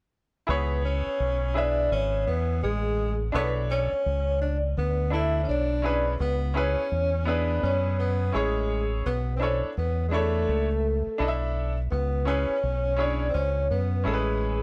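Nocturnal and cool, this swung hip hop excerpt at 84 BPM sets a ringing, vintage-tinged vibraphone melody with slow motor vibrato over a breathy, subtone tenor saxophone second line with scooped notes and tape echo, a woody upright piano accompaniment with long sustain and audible action noise, and a round, dark dub electric bass up front, all four entering at 0.5 seconds and moving between C#m7 and Bm11 in a small room with moderate reverb.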